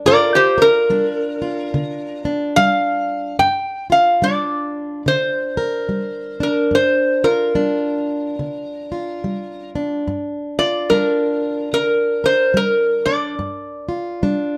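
Cut from a longer piece, this mournful, brooding acoustic country blues opens on a boxy, fingerpicked archtop guitar, joined almost at once by a nasal, metallic resonator played with fingerpicks and a steel bar, which takes an opening solo until 3.4 seconds and then carries the swung melody up front beside the archtop in a dark, moderately reverberant studio sound until 14.2 seconds.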